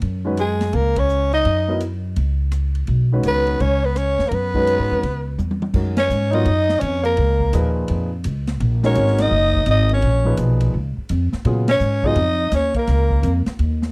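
A growling soprano saxophone leads this modal jazz excerpt from 0.4 s, raspy and gritty up front, with vibrato, scooped notes and a subtone in a jazz solo style. A tenor saxophone carries a second line beneath it, smooth on top and warm, with its own vibrato and scooped notes. An upright bass plays pizzicato up front, woody and growly on steel strings, while a concert grand piano accompanies until 12.2 s with an intimate, natural tone, deep bass, long sustain and audible action noise. A polished, airy big-band drum kit swings underneath with ride, hi-hat, rim clicks, toms, crashes, a punchy kick and a medium-tuned snare, and a drum fill leads into a second section at 5.7 s, where a suspended chord opens onto a major ninth. Band accents punctuate the open, searching mood, all captured in a dry, close studio sound with a 1970s character.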